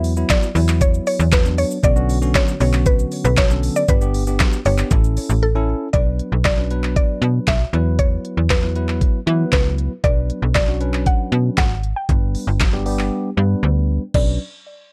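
A snappy, slap-like FM bass sits up front in this dance-pop excerpt, its metallic, digital attack decaying and pumping against the sidechain. Beside it, a smooth R&B drum kit of knocking kick, deep snare, hi-hat, shaker, handclaps and crash cymbal gives a produced, tape-warm push to the straight 4/4 groove. A woody, round mallet-like synth pluck carries the melody with a percussive, chorus-thickened tone, a noise layer and a low-pass filter. A bell-like tine electric piano adds clean, bright chords that also pump with the sidechain. The mood is bittersweet yet driving, moving through Esus2, Bmadd9, G and A in a dark, close-sounding mix with little reverb. The drums drop out briefly at 5.4 seconds, a filter sweep runs through the second section from 5.9 seconds, and the music falls silent at 13.1 seconds.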